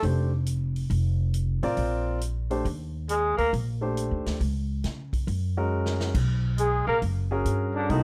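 A swung eighth-note feel in 4/4 drives this short passage of small-group swing and bop jazz, which carries a sophisticated, warm mood. A breathy flugelhorn with light vibrato and scooped notes carries the melody up front, while a growling, raspy tenor saxophone with a subtone adds a lower second line. The two horns sound together only in brief stretches: at the opening, around 3.1 seconds, and again from 6.6 seconds to the end. Beneath them, a polished concert grand piano with deep bass, long sustain and audible action noise comps through rootless and suspended chords, and a woody pizzicato upright bass holds down the low end close to the front. A swinging kit with a punchy kick, hi-hat, snare and crash keeps time and drops in a short drum fill before the horns return. The production is dark with light reverb, lending the small group an intimate studio-room sound.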